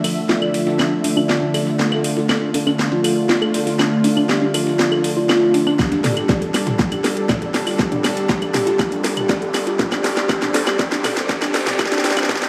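A cracking, metallic house drum kit sits up front in this melancholic, dark melodic techno excerpt at 120 BPM in D minor, joined by a punchy layered electronic kick at 5.8 s and a very quiet riser from 7.9 s as the passage builds with a drum fill and filter sweeps on the soft, round synth lead and the warbling lo-fi pluck arpeggios. The lead, layered with a sub octave, carries the melody through chorus, phaser and dub echo. A lush, nasal unison pad and an evolving analog drone pump under sidechain beside a faint gritty sampler-style kit, with the harmony moving from Dm to G5 to Csus2 in a big hall reverb that sounds like a sound system in a bare room.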